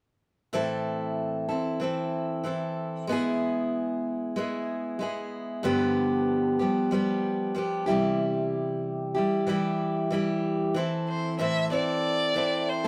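Reflective and wistful, this short pop excerpt moves at 94 BPM in A minor with a light swing, as a picked steel-string acoustic guitar sits up front with a warm auditorium-body tone, carrying the harmony through Am, E/G#, G7 and C. At 11.1 seconds a single bowed violin enters up front with the melody, its soft attack, vibrato and portamento giving an expressive, tender voice. The band plays live together in a stone room whose moderate reverb adds a gentle sense of space.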